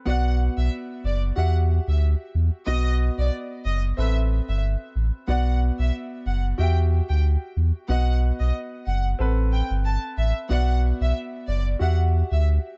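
Dancehall with a tough, bouncy swing, this short cut from a longer piece pairs a deep, up-front sub bass with octave, a clear, polished baby grand piano accompaniment and a lush, bowed studio violin section carrying the melody with vibrato and delay, all cycling through Bm, Emadd9, B and Amadd9 in a dark, small-room production.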